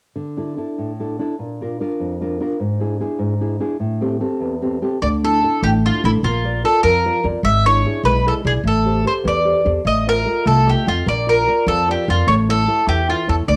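Set in a straight 6/8 at 99 beats per minute, this wistful, passionate Italian folk serenade opens with a full-bodied, thumb-plucked nylon-string guitar, complete with finger squeak and a cassette-tape tint, playing alone until 5.0 seconds. There the bright, double-strung mandolin takes the melody up front, also carrying the tape color, while a thumpy gut-string upright bass plays pizzicato beneath, and the harmony moves from Dsus2 through Bb, E7/G# and Am7 before settling on A. Moderate studio reverb and the home cassette recording frame this excerpt.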